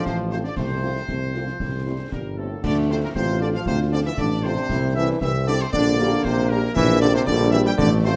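Set in a moderate recital-hall reverb, this short cut from a proud, rousing military-style wind-band march in 2/4 puts a bright trumpet section on the melody over a vintage-toned euphonium second line, smooth, tight trombone chords held in the background, a mellow, up-front tuba bass with light vibrato, a very quiet, distant French horn accompaniment entering at 0.3 s, and close concert snare, bass drum and dark clash cymbals tucked behind.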